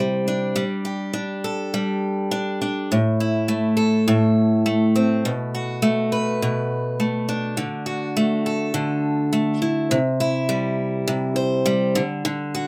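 A bright, picked steel-string acoustic guitar sits up front and carries this heartfelt, sunny pop fragment entirely on its own, ranging from A2 to C5 in a straight 4/4. It moves through Cadd9, Gsus2, Am, Bm7 and Dadd9 before a new section at 9.9 seconds shifts to C and then D. Light reverb and a rough home demo mix give it an unpolished feel, and the piece is cut from a longer performance.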